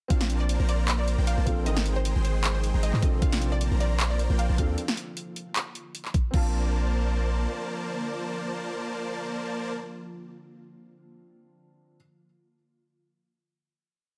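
A half-time future bass groove at 154 BPM in Bb major, with a 16th-note swing, drives this bright, playful piece: an overdriven, knocking electronic kick and a dubstep kit of deep snare, handclaps, crash and bright hats with rolls carry the drop until 6.4 seconds, under a deep, sine-toned 808-style bass that follows the chord rhythm until 7.5 seconds. Huge, detuned supersaw chords throb in tempo across a spread voicing, with a punchy, filter-swept unison pluck repeating its riff melody in the background, and an ethereal, airy pad with ensemble chorus and built-in reverb entering at 1.0 seconds, all pumping against the sidechain. The drop moves through Bbmaj7 and Abmaj7 before settling on a final Bbmaj7 chord. Throughout, a soft, felt-muted upright piano with audible action noise plays rootless held chords with syncopated pushes, and it rings on alone until 12.0 seconds in an otherwise dry mix.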